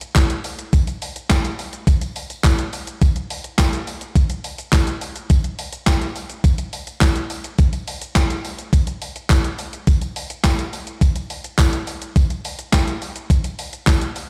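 Played through a big sound system in a bare stone room with light digital ambience, this confident, energetic pop excerpt in straight 4/4 is built around an up-front, overdriven 80s digital drum machine. Its sampler-style kit has a thumpy kick, a gated-reverb snare, handclaps, hi-hat and shaker, all of it electronic. From 0.2 seconds a very quiet, jingly acoustic tambourine sits close and dry beneath the drums.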